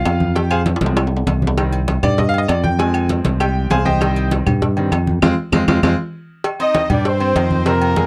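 A bright grand piano leads this passionate, danceable salsa fragment in C minor, taking a solo through the first 6.4 seconds with a brilliant, intimate tone, audible action noise and long sustain. Beneath it, a punchy fingered electric bass sits up front, while ringing congas, a round, low-tuned cowbell, and metal-shelled timbales with agogo bells carry the brisk 197 BPM pulse in 4/4. Woody claves sit in the background until 5.9 seconds. Drum fills break in early on and again at the close of the opening passage, where the band strikes accents together. At 6.6 seconds a clear horn section enters up front with light vibrato and a pop-style ensemble sound as the harmony settles back on C minor after alternating with F minor. The sound is dry and close, in the manner of a 1970s studio.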